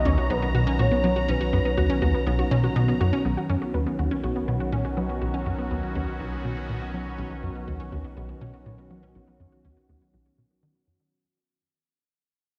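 Heard through worn, warbling cassette tape and a moderate plate reverb, this cosmic, expansive sequencer-driven space music sets a tight, punchy sawtooth sequencer bass riff with analog chorus and tape echo over a deep, round sine sub bass, a lush, detuned unison pluck arpeggio with tape echo, and an airy, evolving pad up front holding a Badd9 chord, while a smooth, dark synth lead with vibrato sings a brief melody until 2.8 s before the piece fades out from 3.2 s under a filter sweep on the sequencer bass.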